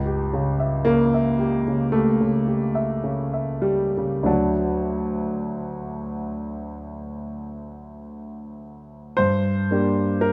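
Rubato and in 4/4, this melancholic, mournful romantic nocturne for solo piano is an excerpt cut from a longer piece, with a warm, natural grand piano placed up front and heard through close, detailed microphones in a moderate recital hall reverb, spanning C#2 to A5 as its harmony moves from C#dim7 to D at 4.3 seconds and then to Gm as a new section arrives at 9.2 seconds.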